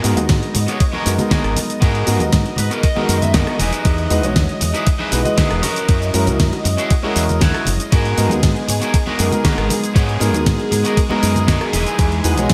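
Bright, 1980s-style digital production with light reverb frames this cosmic, groovy nu-disco cut from a longer piece, moving at 118 BPM in G# minor through G#m9, Emaj7 and F#7. A thumpy, tape-warm electronic kick sits up front beside a fingered electric bass with an envelope filter, while a pop drum kit with a fat snare and gated reverb plays hi-hat, ride, rim click and shaker, and very quiet congas and bongos join at 0.2 s. A deep concert grand piano and a lush, detuned sawtooth pad both pump with sidechain alongside a twangy electric guitar riff at the edge of break-up, which slips into clean fills at 2.3 s and 11.0 s.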